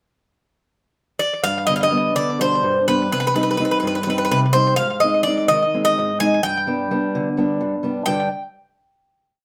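Heard from further back in a wet studio reverb, this moody, cool Greek folk piece in 7/8 opens with a bright, metallic bouzouki entering at 1.2 seconds with slapback echo, its double strings and some octave-doubled strings carrying an ornamented modal melody, while from 1.4 seconds a dark, boxy fingerpicked archtop guitar, its finger squeak audible, sets an oompah of bass notes and chord figures beneath it until both parts stop at 8.3 seconds.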